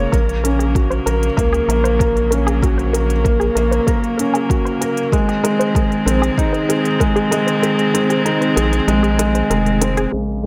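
Hypnotic and intimate, this straight 96 BPM piano and strings electronica excerpt sets a soft, felt-muted upright piano riff with audible action noise and tape echo up front over a round, deep analog bass and sustained, vibrato-rich string quartet chords that fade in and pump with the sidechain, while a lush, detuned sawtooth pluck arpeggiates in the background through cassette tape and echo, smooth overdriven hi-hats tick along, and a deep, overdriven kick drives until it drops out at 7.6 seconds, all within light reverb and digital ambience.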